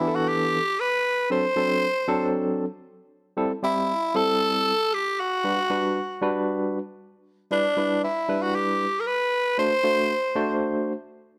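Funk in E minor at 116 BPM with a funky, slick mood, this short excerpt cut from a longer piece sets a growling tenor saxophone, raspy and bright with light vibrato, up front on a pop-style solo melody over a barky tine electric piano. The electric piano, clean and played through a combo amp with fast tremolo, carries the accompaniment through chords moving from Em7 and D7 to C6 and Gmaj7 before returning to Em7 and D7. Light reverb gives the pair a small room ambience, with the saxophone stopping at 10.6 seconds and the piano at 10.9 seconds.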